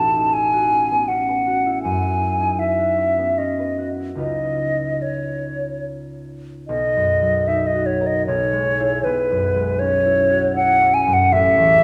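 This is an impressionist classical duo for flute and harp, dreamy and luminous in mood, moving in a rubato 3/4 at roughly 71-82 BPM in B major. It is cut from a longer piece, and both instruments play throughout its 11.8 seconds. The silver concert flute carries the melody between B4 and A5, sitting close and up front with an airy, hollow tone, vibrato and soft attacks. Beneath it, the concert harp supplies thumb-plucked, ringing accompaniment reaching from A1 up to B4, set lower in the balance than the flute. The harmony drifts through colorful extended chords such as A69, F#11 and C#9, then settles at 6.7 seconds into a second passage built on Bmaj7 and Emaj7/B. A moderate scoring-stage reverb with a 2.0-second decay surrounds the pair in a soft, spacious halo.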